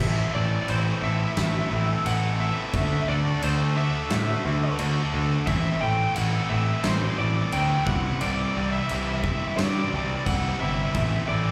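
This short live clip sounds like it was caught through a club PA, fairly dry but with a little of the room's reverb around it. It is angsty, cathartic alternative rock of the quiet-loud kind, moving at 88 BPM in a straight 4/4 and set in A dorian, with the chords cycling from Am through D and Cadd9 back to Am. A punchy, overdriven picked bass sits up front on the low end. A big, natural-sounding acoustic drum kit drives the beat with a fat snare, a punchy kick and crashing cymbals until it stops at 11.1 s. Two rhythm guitars play the riff: a bright, overdriven one with slapback echo and, further back, a thick fuzz-distorted guitar. Above them, a lead guitar through a small cranked amp carries the melody in a warm, overdriven tone, thickened by slapback echo and analog delay.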